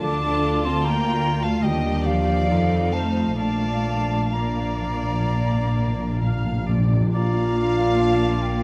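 A serene, tender slow romantic movement for symphony orchestra in Bb major, moving with rubato at 63-77 BPM, opens with a warm chamber violin section carrying the melody in the background under a mellow, hollow silver flute and a second violin line, while violas accompany, a bright, ringing concert harp plays arpeggios, and a dark, woody cello section joins a clear, floating double bass section on the bass. Timpani played with soft mallets add a round fill from 3.4 to 7.1 seconds. At 7.1 seconds a solo oboe enters on a second line and a mellow, vintage French horn section sustains chords, all captured with close, detailed microphones and light reverb in this passage cut from a longer piece.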